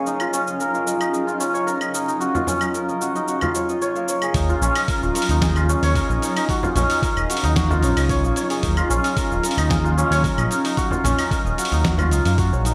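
Earthy and meditative, this organic downtempo excerpt sets a shimmering, hammered santur playing arpeggios up front over a blurred, evolving granular cloud pad with reverb, chorus and sidechain pumping, while a gritty, overdriven sampler-style kit of claves, hi-hat, shaker and fat snare with gated reverb and a soft-handed frame drum in the background from 2.3 s lead to a smooth gliding synth bass and a thumpy electronic kick arriving at 4.3 s, all in a bright 1980s-style digital production with moderate plate reverb.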